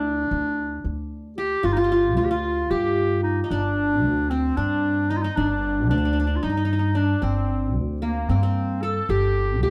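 Captured live in one room with a light reverb, this melancholic, longing Turkish makam ensemble excerpt in 7/8 sets a clear, classical-style solo clarinet up front on the melody, a bright-edged, plectrum-plucked qanun with triple strings carrying a second line in the same register, and a woody, thumpy pizzicato upright bass on gut strings underneath, all three playing together throughout its 9.7 seconds.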